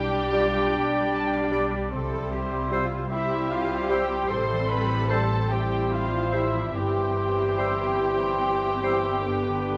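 Muted violins, veiled and distant con sordino, carry a serene, lyrical melody in this slow, rubato romantic orchestral movement in C major, moving in a gentle 12/8 at 50 BPM, with a mellow cor anglais and a second muted violin section tracing a second line beneath. Dark, lush muted violas and cellos, double basses, a mellow bassoon and a sustained bed of warm French horns and clear trombones support the harmony, while a quiet concert harp rings out arpeggios and a mellow trumpet section adds stabs. A clear clarinet and an airy flute ensemble join at 0.3 seconds, all set in a wet scoring-stage reverb, in this fragment cut from a longer piece.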